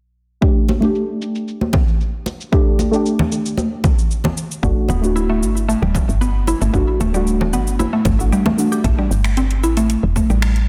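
A deep, warbling chord stab with a vintage tape character opens this meditative, mystical organic downtempo excerpt at 114 BPM, pumping against a punchy, overdriven electronic kick and a filtered deep house kit of cabasa, finger snaps and metallic hi-hats, while ringing, close and dry congas played with hard hands join almost at once. At 4.6 s a soft, round, woody FM bass arrives as the harmony moves from A7sus4 to Gmaj7, soon joined by a percussive, wave-folded synth pluck playing arpeggios with chorus and delay. The kick drops out from 8.3 to 8.8 s before the chords settle on Am7, and the mix sits in a moderate hall reverb with a dense, heavily limited master.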